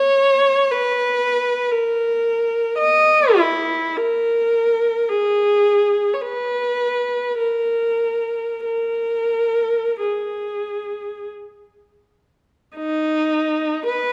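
Classical and mournful, this lonely fragment cut from a longer piece features an unaccompanied solo viola, bowed up front with a smooth, even tone and vibrato, playing freely in a rubato 3/4 within a moderate recital-hall reverb, moving into a new section near 12.7 seconds.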